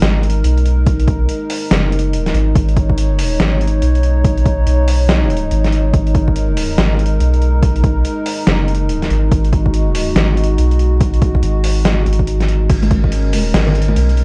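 A dark, nasal analog pad holds a sustained G# minor chord with lush chorus from the opening moment, over a deep, round sub bass sitting up front and a gritty, pitched-down, sampler-style trip hop kit of crash cymbal, hi-hat and snare. This heavy, meditative slice of deep dubstep moves at 142 BPM in a swung half-time feel, with a punchy, overdriven electronic kick joining at 0.9 seconds and bright, band-limited congas and bongos appearing in the background at 12.8 seconds. The sound is dry and gritty, a hardware recording dusted with vinyl crackle.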